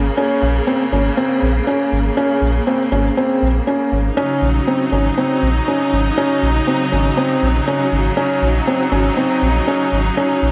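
Piano and strings electronica at 120 BPM in 4/4 with a straight feel, this short excerpt cut from a longer piece carries a moving, cinematic mood, tuned to A4 = 442 Hz. A felt-muted upright piano enters at 0.2 s with a riff, its thick felt giving a soft, mellow, intimate tone with audible action noise, sitting up front and trailed by tape echo. Beneath it, a round analog bass blending sawtooth and sine holds deep, sustained notes with a fast attack. A rich studio string section plays sustained chords with vibrato, its bowed ensemble sound smooth, even and lush. The harmony moves from Bbmadd9 to Ebm7 at 4.2 s, and a lush hall reverb with a 2.7 s decay surrounds the arrangement.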